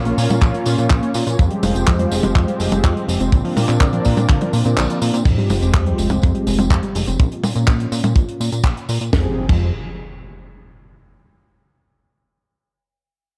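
Italo disco at 124 BPM in F minor, danceable and nostalgic, built on a glossy, nasal chorused synth bass, smooth detuned pad chords, round brassy synth stabs with vibrato, and a warbling, lo-fi pluck arpeggio with a noise layer, the last three tucked in the background with chorus and the stabs and pluck also carrying digital delay. A tight funk drum kit with a high-tuned snare, handclaps, hi-hat, tambourine, toms and crash sits in a small room alongside an up-front acoustic kick, all under a dark, warm production with light reverb. The kick drops out at 4.8 s along with a band accent, then at 5.3 s an electronic sub drop and impact lands as a filter sweep moves across the pad over the cycling Fmadd9 and Bbm chords, the sub drop and impact carrying on to the close of this cut from a longer piece.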